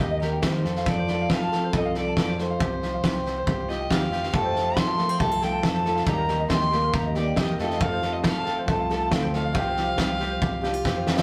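A rough rehearsal-room recording in a small, moderately reverberant room carries this uplifting, hopeful indie folk excerpt in F mixolydian at 138 BPM in 4/4, with the arrangement building over a cycle of Eb, F and Csus4. A reedy, gut-string fiddle sings the melody from a distance above a bright, full-bodied fingerpicked dreadnought guitar, light tenor ukulele arpeggios and a dark, round fingered electric bass. A roomy acoustic drum kit with a fat snare and punchy kick sits up front from 0.2 seconds, a boxy, shimmering octave-doubled twelve-string guitar joins in the background at 4.3 seconds, and a drum fill arrives at 10.8 seconds.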